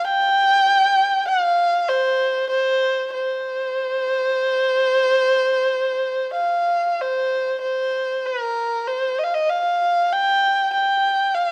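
Chinese traditional music in free time, this tender, wistful passage cut from a longer piece features a single bowed erhu, dark and woody in tone, singing up front between Bb4 and G5 with vibrato and portamento across its 11.5 seconds, captured by close, detailed microphones within a moderate recital-hall reverb.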